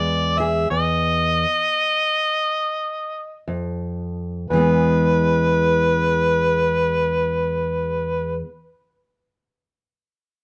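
An amplified, overdriven harmonica and a fingerpicked steel-string parlour guitar open this short cut from a longer acoustic country blues piece together, setting a gritty, soulful mood in E major. The tempo sits slow, between 55 and 73 BPM in a swung 4/4, and the pulse slows down through the first 4.5 seconds. Up front, the harmonica carries the melody in a jazz style, with light vibrato, tongue slaps and scooped notes, bathed in plate reverb. The boxy guitar accompanies from its low bass strings upward, leaving a bare, unharmonized stretch after an opening E chord before returning to E as the second section begins at 4.5 seconds. The production is dark and warm, with a moderate studio room around both players, and the harmonica drops out at 8.4 seconds, just before the guitar finishes at 8.5 seconds.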